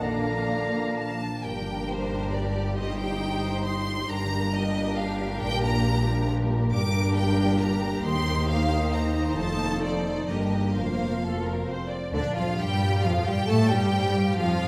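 This excerpt is heard in a resonant hall, with a wet, reverberant sound giving the full string orchestra a lush, spacious glow. It is a lively, cheerful classical passage in 3/4 at 135 BPM, played with a flexible rubato feel, starting in G minor before moving to Bb major from 6.7 s. A bright, focused first violin section carries the melody up close with vibrato, while a second violin section, clear and intense but more distant, sings a second line beneath it. The oboe and bassoon appear only at the start, dropping out by 1.2 s, the oboe adding a clear solo line and the bassoon a warm accompanying note. The violas fill the middle with expressive vibrato and portamento, the cellos sit smoothly in the background, and the rich double basses anchor the bass. A ringing, thumb-plucked harp weaves arpeggios across a broad range behind the strings, and the harmony passes through chords such as Cm7/Eb, F7 and Fsus4, reaching Bb/D and then F7 near the close.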